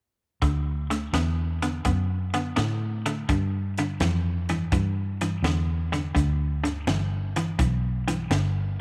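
A swung shuffle at 84 BPM in 4/4 sets a swaggering, laid-back electric blues groove in D major, cut from a longer piece and tuned slightly below standard pitch. An electric guitar at the edge of break-up plays the riff up front, its tone bright and twangy with a picked attack. A vintage muted fingered electric bass sits equally forward, round and dark with a foam-muted, amped character. A compact cocktail drum kit of hi-hat, kick and snare keeps time with a dry, acoustic sound, a high-tuned snare and a punchy kick. All three parts enter together at 0.4 seconds, with the harmony moving from D to G7 at 3.3 seconds before the drums stop at 8.5 seconds and the guitar and bass carry on to 8.8 seconds, all set in light reverb and studio ambience.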